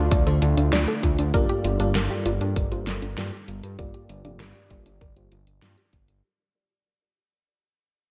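Nocturnal and driving, this short synthwave excerpt at 98 BPM moves from Dm to Gm7 over a fade-out, with a fat, saturated analog bass up front and a punchy electronic kick. A pop kit adds gated-reverb snare and warm hats, while a detuned pad pumps in the background and a round analog pluck runs arpeggios through tape-worn delay. A lush, dreamy FM electric piano plays chorused stabs under a filter sweep until 5.7 seconds.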